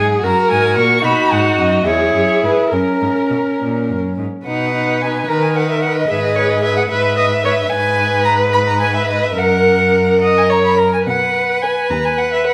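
A lively, graceful movement for string quartet opens with the first violin carrying a smooth, up-front melody over the second violin's inner line, the focused viola accompaniment and the clear cello bass, each player bowing with vibrato. The music moves in 6/8 with rubato, and a second section begins at 4.5 s before this fragment of a longer piece breaks off at 12.5 s. A reverberant recital-hall acoustic surrounds the rich-toned ensemble.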